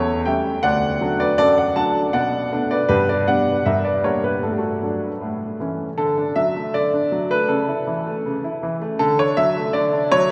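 A polished grand piano plays alone and up front through this short passage from a classical-period sonatina, its clear, present tone carrying a long sustain across a range from D2 to A5. The mood is elegant and cheerful, set in D major at a relaxed 79 BPM in a straight 2/4, with the instrument tuned to A4 = 439 Hz. The harmony moves from A7/E through D, Bm7 and G to a tinged Gm6 before settling on A. A second section begins at 6.0 seconds and circles between D and A/C# to close on D. The piano sits in a church or concert hall, bathed in a wet cathedral reverb whose 6.2-second decay lends the playing a spacious, ringing halo. The clip is cut from a longer piece and runs to 10.3 seconds.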